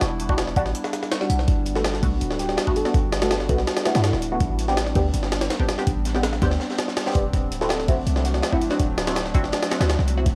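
A gritty, pitched-up jungle sampler kit with a thumpy kick and high-tuned snare drives this raw, frenetic drum and bass cut at 164 BPM, joined from 1.5 seconds by a very quiet, dark, saturated breakbeat kit, while a deep, boomy 808-style bass sits up front beneath it. Muted, nasal dub chord stabs with phaser and dub echo sit over a warbling, nostalgic tape-like pad holding sustained chords through Em7, Gmaj7, Am11 and D7. A round, keys-like FM lead drifts in the background from 1.8 to 4.4 seconds and again from 7.6, the whole home cassette recording carrying a lo-fi, lightly reverberant air in this excerpt from a longer piece.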